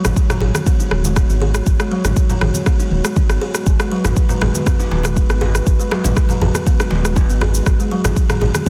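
A short cut from an earthy, spiritual afro house track at 120 BPM in G# minor opens on a held G#m7, with a dark, nasal, detuned analog pad pumping under sidechain and chorus, while a buzzing, woody kalimba plays airy arpeggios through a low-pass filter and tape echo above a round, deep analog bass thickened by tube saturation. An up-front, layered electronic kick arrives at 0.2 seconds beside a tape-warm afro-pop kit of rim clicks, shaker and toms, with soft clipping on its snare, and bright, low-tuned congas sitting compressed and saturated in the background. At 3.7 seconds a tight, cracking djembe joins, very quiet and distant, and the whole piece sits in a small room with light reverb under a dense, heavily limited modern master.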